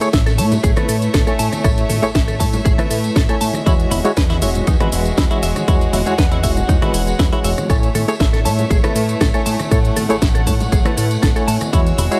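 Nu-disco at 119 BPM in a straight 4/4, this groovy, feel-good excerpt from a longer piece moves over Amaj7 and E69 chords for about 12 seconds. A punchy, overdriven electronic kick sits at the front, layered with a house drum kit whose cracking snare, hi-hat, rim click and shaker share the same overdrive and large-room re-recording, while tambourine and congas add a vintage, band-limited texture in the background. A fat analog bass, sawtooth and square wave, detuned, with a moving notch and mellow sustain, anchors the low end from 0.1 seconds. A barky, reedy electric piano carries the accompaniment through built-in speakers, lightly overdriven with fast tremolo, sidechain pumping and tape echo, as a twangy, direct-recorded clean guitar picks a compressed riff dressed in analog chorus and echo. Above them a rich, intimate studio violin section holds soft-attack sul tasto chords with light vibrato, pumping under the kick, and the whole mix sits in a digital ambience.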